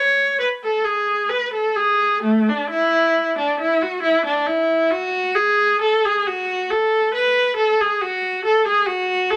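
At a relaxed 67 BPM in 4/4, the pulse bends freely with rubato, giving this baroque-style suite movement a flowing, dance-like lilt. A single bowed viola plays alone from 0.0 to 9.4 seconds, moving between A3 and C#5 in A major, tuned to A4 = 439 Hz. Its tone is rich and focused, shaded with vibrato, and it sits up front in the sound. A moderate studio reverb lends a gentle sense of space around the instrument. The passage is cut from a longer classical piece.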